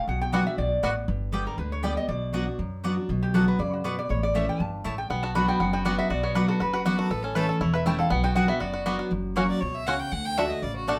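Driving and haunting, this fast bluegrass excerpt in B minor at 239 BPM puts an up-front, metallic, nasal slide lap resonator guitar melody over a full-bodied jumbo acoustic guitar with finger squeak, a woody pizzicato upright bass, twangy, percussive banjo arpeggios and bright double-string mandolin stabs, while a rich, boxy bowed fiddle with light vibrato enters at 6.8 seconds, and after the resonator stops at 8.8 seconds it takes a solo from 9.1 seconds, all set in moderate small-room reverb.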